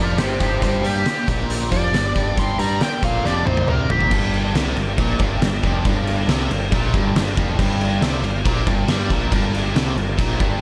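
A dark, distorted lead guitar with wah and slapback echo opens this heavy, brooding blues rock and southern rock excerpt, shadowed by a second biting overdriven lead in the background, while a double-tracked riff guitar with spring reverb, a growling round bass and a gritty tonewheel organ with chorus vibrato and slow rotary speaker play beneath over a G minor chord. An oversized, low-tuned drum kit with a fat snare, punchy kick and dark cymbals sits up front in a pumping stone room, firing a fill from 3.2 s just before both lead guitars stop at 4.1 s. From there the riff guitar, bass, organ and drums carry on together in a big arena sound bathed in lush hall reverb.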